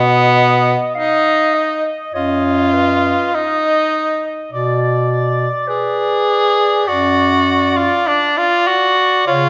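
Up front, a clear tenor saxophone carries the accompaniment with light vibrato, soft attacks and a smooth top, alongside a dark, distant bass clarinet bass line, a clear alto saxophone on the second line and a shadowy clarinet melody set farther back, in a serene, lyrical classical fragment for single-reed quartet at a slow, rubato 50 BPM in 4/4 that moves from B major to B minor at 4.5 seconds within a reverberant recital hall.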